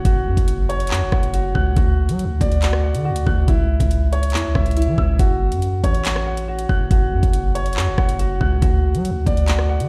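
The recording sounds as if it were played through a big sound system in a bare room, with a large studio reverb around the mix. This is a dark, ominous drill cut taken from a longer hip hop piece, moving with a half-time feel in 4/4. A clear, open baby grand piano carries the accompaniment in a high register, softened by a low-pass filter and ringing with long sustain over chords that shift from F#5 to D, C#m, F#m and back to D. Underneath, a hard-hitting 808-style bass sits up front, punchy and heavy, with a sine core, a noise layer, a fast attack and a decaying tail. The electronic drill kit enters at 0.1 seconds, also up front, with a knocking kick, metallic hi-hats, handclaps and rim clicks giving it a produced edge.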